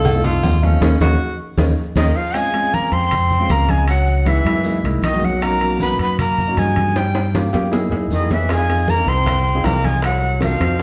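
Sophisticated and fiery, this short Afro-Cuban jazz excerpt opens with a clear, vintage tenor saxophone solo with light vibrato and scooped notes, over a warm, intimate grand piano with audible action noise and an up-front, amped fingered electric bass. A breathy, bright metal flute with a crisp, chiffy attack takes the melody at 2.0 s, close-miked and unsteady, while the saxophone carries on as a second line. Behind them sit hard-handed congas, ringing agogo bells and timbales, and grainy maracas; tight, high-tuned cowbell and bongos drop out at 2.1 s and return at 8.5 s, with drum fills and a band accent, all set back in a large, reverberant studio.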